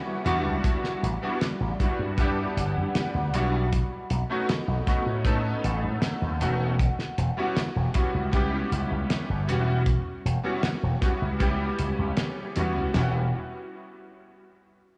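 Cassette-tinged and lightly reverberant with small-room ambience, this hazy, nostalgic vaporwave excerpt sets a bright, clangy electric grand piano with ensemble chorus and analog delay over a warbling, detuned tape-like pad drifting in the background with phaser, while a punchy slap bass through an envelope filter and a dry, damped 70s drum kit with a fat snare, tight kick and dark cymbals sit up front, its hi-hat and snare touched by gated reverb.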